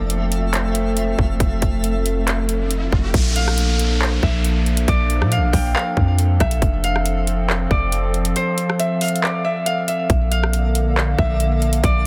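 A fingerpicked, ringing Celtic harp carries the melody with delay from 3.4 s, floating over a warbling, nostalgic lo-fi pad of sustained chords that pumps with sidechain and is coloured by chorus and reverb. This dreamy, atmospheric cloud-rap piece sits in a half-time feel, with a soft, round 808-style bass up front, a trap kit of hard-clipped kick, metallic hats, handclaps and rim clicks, and an electronic riser and downlifter passing through early on. A luminous, twinkling granular texture sparkles in the background at the start and returns near the end, while the kick drops out between 8.4 and 10.1 s in a dense, heavily limited mix.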